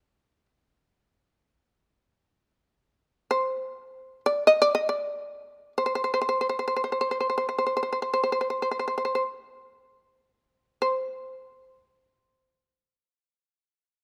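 Closely miked with a light touch of reverb, this 14-second fragment of a longer piece of traditional Japanese chamber music features a solo shamisen, plucked with a plectrum between G4 and Eb5, whose percussive, buzzing, fretless tone sits powerfully up front as it unfolds in free time with an austere, calm mood.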